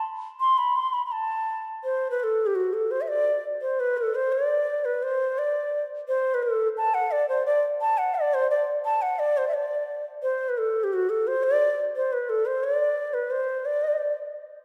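Solemn and longing, this short piece of Indian classical music, cut from a longer work, moves in 3/4 at 172 BPM and gradually speeds up. A lone bansuri carries the whole solo from 0.0 to 14.2 seconds, spanning F#4 to C6 with a pure, hollow bamboo tone, tongued notes and vibrato. It sits up front in a lush concert hall reverb with a 2.4-second decay, as if played in a church or large hall.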